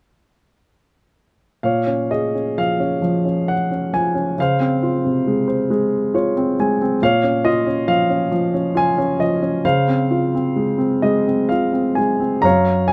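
In a rubato 6/8, this calm and tender fragment of lyrical classical solo piano features a warm, intimate grand piano placed up front with natural tone and audible action noise, adding a brief fill from 5.7 to 7.0 seconds over its chords in close, detailed sound with light reverb.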